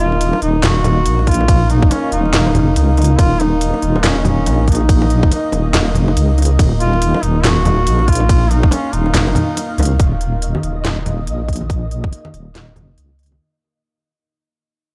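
Deep dubstep at 141 BPM in Eb minor, this meditative, cavernous excerpt moves with a swung, half-time feel and is cut from a longer piece. A distant, roomy duduk carries a folk-style solo melody with light vibrato and scooped notes, trailed by dub echo, until 9.8 seconds, while a moody ambient pad holds slow-blooming sustained chords under chorus and reverb. Up front, a compressed, wobbling sub bass with tube saturation and chorus anchors the low end, joined at 1.3 seconds by a tight, tape-toned electronic kick. A garage kit with a cracking snare, crisp hats, handclaps and ride cymbal, re-recorded in a large room, sits alongside soft-handed bongos and congas tucked in the background. The drop gives way to a fade-out at 10.0 seconds, and at 10.3 seconds a faint, flickering granular texture on Eb5 drifts in, all within a dry, gritty cassette-tape sound.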